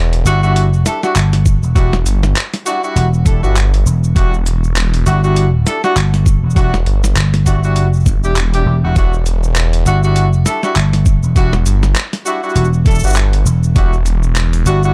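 A thick, swirling detuned saw bass sits up front in this swaggering, gritty glitch hop excerpt, its sustained sawtooth tone colored by a phaser and tube saturation in the low register from E1 to G1. Beside it, a growly, amped vintage slap bass covers the same low range and is just as prominent. A tight jazz-style horn section with light vibrato plays stabs over a single Em9 chord, pumping from sidechain compression and trailed by delay. A compressed, pitched-down sampler-style drum kit supplies handclaps, hi-hat, shaker and a medium-tuned snare in a small room, with a swung sixteenth-note feel. A layered, knocking electronic kick enters at 1.5 seconds and stops at 13.9 seconds, all within a dark, warm production with a digital ambience.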